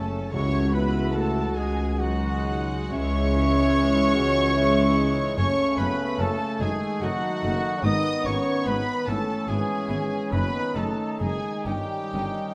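Solemn and melancholic, this slow classical excerpt in 6/8 and C# minor moves with rubato at 48 BPM, as a dark, woody violin section sings the sul tasto melody, joined by an airy flute, a vintage-toned clarinet and a soft, floating second violin line, while a mellow bassoon and a very quiet viola section accompany, dark French horns and bright trombones hold sustained chords under distant trumpet stabs, a tuba, double basses and cellos anchor the bass, and round timpani are barely audible from 0.3 to 1.5 seconds, all in a moderate recital hall reverb captured with close, detailed microphones.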